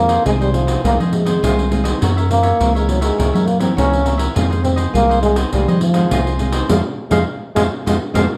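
A straight four-beat samba and choro groove sets a bittersweet, nostalgic mood, with a jingly pandeiro, played with soft hands, sounding distant in a large room. Out front, a fingered electric bass gives a round, amped foundation, while a nylon-string guitar adds warm, thumb-plucked classical accompaniment in the background and a cavaquinho contributes bright, crisp picked accompaniment high above. The breathy trombone carries the melody in a dark, whispered, intimate jazz style, with light vibrato, a soft attack and a roomy plate reverb that places it at a slight distance. The harmony moves from Fm7 to Gb7#11 and returns to Fm7, and the whole band hits an accent from 6.7 seconds to the close of this short passage cut from a longer piece.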